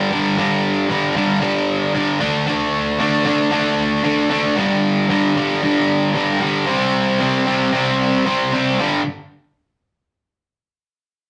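A cranked stack guitar, electric and bright, carries this aggressive, heavy rock excerpt on its own, picked and double-tracked with overdrive, sitting up front in the mix. At 114 BPM in a straight 4/4, it works through power chords on G5, D5, G5 and C5, ranging from G2 up to D4. The guitar plays from the start until 9.0 seconds, and a new section begins at 8.8 seconds as the chords return to G5. The sound is rough and raw, like a rehearsal-room take, with tube saturation adding grit. A wet studio reverb gives the room a short, lively tail around the crunching chords.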